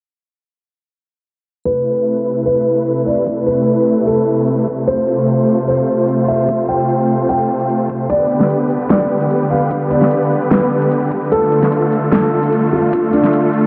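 At 1.7 s, a dark, mellow grand piano melody with delay and audible action noise enters alongside up-front supersaw chords: bright, detuned sawtooth stacks that pump with sidechain through Amadd9, F, G and Dm in A minor. This heavy wobble dubstep piece runs at 149 BPM in a half-time feel. A layered electronic kit of huge snare and metallic hats and a knocking, high-pass-filtered kick sit in the background, while a filter sweep runs through the section. The mood is aggressive and chaotic, yet the mix is dreamy and soaked in vast, low-passed reverb, and this cut from a longer piece closes at 13.7 s.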